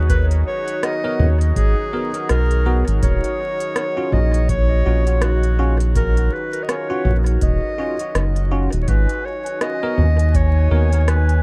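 A deep, moody pad with 12-bit sampler grit and a round, up-front sawtooth bass open this meditative, hazy ambient dub fragment, joined at once by a clear, classical-style solo clarinet trailing dub echo. A tape-warm electronic kick sits in the background alongside a small-room drum kit of crisp hats, rim clicks and toms, while bell-like tine electric piano stabs with analog chorus enter at 1.0 seconds, and the harmony moves between G#m9 and D#m7. At 8.9 seconds a bubbling, resonant stepped-filter texture surfaces in the background, all set in a dark digital ambience flecked with vinyl crackle.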